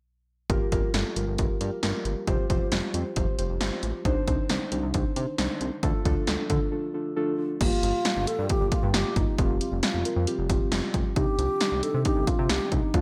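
Bright 1980s-style digital production with a moderate plate reverb frames this melancholic, nocturnal synth-pop excerpt in G minor at 135 BPM, where a punchy analog drum machine with gated reverb sits up front, its kick, snare, hi-hat and crash sounding as if re-recorded in a large room. A glossy chorused synth bass and muted, felt-like synth keys, soft and dark under their own chorus, carry a cycle of Gm7, Fsus2, Cmadd9 and Dm, and a break arrives at 6.7 seconds. At 7.6 seconds a mellow, hollow alto flute enters with a pure, tongued melody touched by vibrato and digital delay, playing through to 13.0 seconds.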